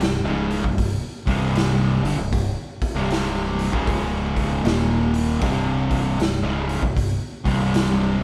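Brooding and ominous, this short cut from a longer stoner and doom metal piece crawls at 78 BPM in 4/4 with a swung eighth-note feel, its riff moving through C5, Db5, Eb5 and back to C5. An up-front, double-tracked fuzz guitar carries the riff over a bright, compressed, distorted electric guitar sitting in the background, while a growling fingered bass, overdriven with tube saturation, holds the low end. A raw garage drum kit of hi-hat, punchy kick and medium-tuned snare sounds gritty and dark with a rolled-off top, and the band plays live together in a stone room with moderate reverb.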